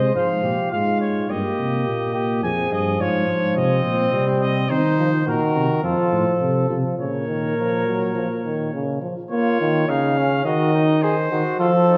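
A clear, distant trumpet melody opens this solemn classical brass canzona fragment, joined from the start by a warm, punchy flugelhorn second line, a smooth-topped euphonium accompaniment sitting up front and a mellow, lightly vibrato-touched tuba bass that drops out at 9.0 s, all carried by a roomy, wet concert hall reverb.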